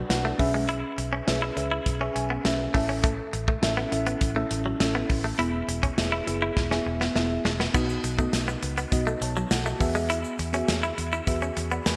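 A straight, steady 4/4 pulse drives this dramatic, moody 1980s-style pop fragment, carried by an up-front acoustic drum kit with a punchy kick, a medium-tuned snare and a dark, rolled-off top, all bathed in gated reverb. Beneath it, a foam-muted fingered electric bass plays a round, amped low line, while a mellow FM electric piano supplies soft, full-bodied chords with a noise layer, treated with chorus and phaser, and adds a fill at 1.9 seconds. A clean, direct-recorded electric guitar picks a compressed, twangy riff through lush chorus and digital delay. The harmony moves from E6/B through A and E to B and Eadd9, and after a drum fill at 6.6 seconds the music shifts into a new section at 7.7 seconds, where a grainy egg shaker joins in the background. The production is bright and digital, with a moderate lush hall reverb blended with a small room ambience.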